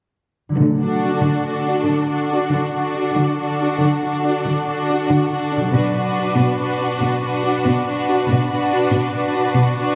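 A thumb-plucked concert harp opens at 0.5 s with ringing arpeggios set in the background, launching this heroic, soaring passage of cinematic adventure score in 12/8. A brief strike from close, dry timpani played with hard mallets sounds between 0.6 and 1.2 s, as a rich, up-front cello section settles into a smooth bass line. Lush bowed violins carry an expressive, vibrato-laden melody with a soft attack, while a second violin line and a rich viola section sustain even, smooth accompaniment beneath it. From 1.0 s a very quiet, mellow French horn section holds tight sustained chords in classical style. The whole cut builds as a single sweep, heard from further back on a scoring stage with a generous wet reverb.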